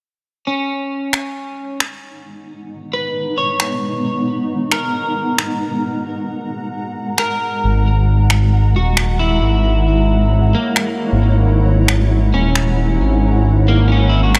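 A light reverb and digital ambience frame this wistful, rainy future garage excerpt in G# minor, moving at 134 BPM with a swung sixteenth-note feel as it shifts from G#m9 to F#9. A picked electric guitar on the edge of break-up, compressed and coloured by analog chorus and digital delay, opens at 0.5 seconds, joined by overdriven, layered finger snaps up front and a blurred, cloudy granular pad whose filter sweeps as its slow-attack chords evolve. At 7.6 seconds a deep, rumbling detuned saw bass arrives prominently, its beating unison tone thickened by tube saturation.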